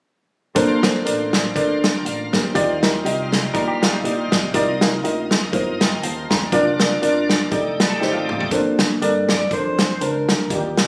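Swinging at 121 BPM in 4/4, this hopeful, uplifting uptempo gospel excerpt in Bb major puts a woody, slightly detuned upright piano and a tight soul drum kit up front, with a round fingered electric bass below and a shouting, lightly overdriven tonewheel organ on fast rotary speaker holding chords until 8.5 seconds, while a clean hollow-body guitar adds brief spring-reverbed lines and a dark, scooped alto saxophone takes the melody from 9.3 seconds, captured by a phone in a lightly reverberant room.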